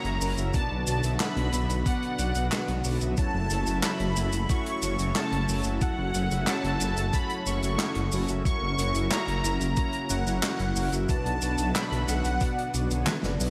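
A nocturnal, moody synthwave passage opens with a smooth, full-bodied soft supersaw melody with tape echo and shimmer reverb, over a thick, detuned unison pad pumping in the background, round, brassy synth brass stabs with chorus and delay, a deep, rumbling saturated saw bass up front, and a distant, roomy soul drum kit of handclaps, hi-hat, shaker, snare and toms. A thumpy, tape-warm electronic kick enters up front at 0.5 seconds, while the chords move between F#7, Bm and F#m7. A lush hall reverb gives the whole mix a big arena sound, and a drum fill arrives at 13.1 seconds before this cut from a longer piece ends.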